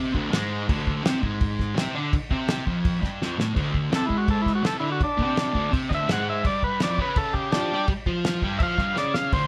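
Garage rock with a rowdy, swaggering mood at 166 BPM, this excerpt from a longer piece opens on a distorted, double-tracked fuzz guitar riff over a dry, thuddy cloth-damped drum kit with a fat snare and dark cymbals, then after a drum fill at 3.2 seconds a buzzy, overdriven combo organ with light vibrato takes a solo from 3.6 seconds, as the chords move from D5 to D7#11 and on to G5, all captured as a band playing live in one room with light reverb.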